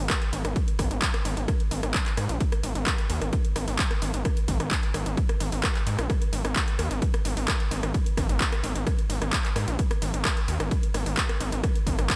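A straight 4/4 pulse at 130 BPM drives this industrial peak-time techno cut, where an overdriven, heavy electronic kick sits up front with studio reverb, a layered techno kit of handclaps, hi-hat, ride cymbal and rim click adds overdrive, gated reverb and sidechain pumping on the hats and cymbals, and a gritty, aggressive synth bass built from sawtooth, sine and triangle tones with oscillator sync, ring modulation, a filter pluck and fast attack pumps and distorts between G#1 and G#2, set in a dry, bright 1980s-style digital production.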